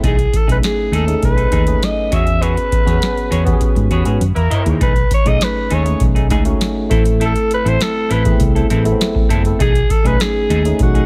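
Upbeat and breezy, this polished 1980s jazz-funk pop clip moves at 100 BPM in a straight 4/4, led by a raspy, growling alto saxophone melody with vibrato and digital delay over a lightly overdriven, slightly out-of-tune tine electric piano, a clean hollow-body electric guitar riff with subtle chorus, and a dark, foam-muted fingered bass. A booming analog drum machine sits up front with a deep kick, crisp snare, metallic hats and toms, and a punchy, tight horn section adds a brief second line from 3.9 to 4.8 seconds during a band accent that ends in a drum fill. The chords move through B13, E69, F#13 and Am in a digital ambience.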